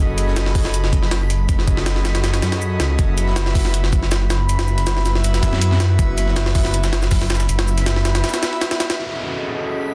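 A thick, menacing detuned saw bass with tube saturation sits up front in this dark, atmospheric drum and bass excerpt, joined by an overdriven jungle sampler-style drum kit with a thumpy kick and high-tuned snare, a very quiet gritty breakbeat kit of hi-hat, shaker and snare, an airy, breathy pad holding sustained chords with chorus and 12-bit sampler grit, a reversed, dreamy granular texture in the background, and a downlifter arriving at 9.0 seconds.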